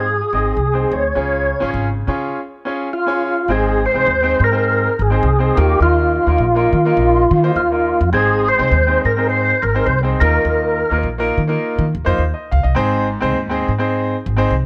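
A fat, lightly overdriven tonewheel organ carries the melody from the start, its percussive attack and key click colored by chorus vibrato and a slow rotary speaker, over a clear grand piano with long sustain and a woody pizzicato upright bass. This joyful, uptempo 1960s-style soul groove swings at 104 BPM in Ab major, moving between Ab, Db and Ebsus2 chords in a light reverb. The organ drops out at 11.0 seconds, leaving piano and bass to carry this fragment of a longer piece, the piano until about 14.5 seconds and the bass until about 14.7 seconds.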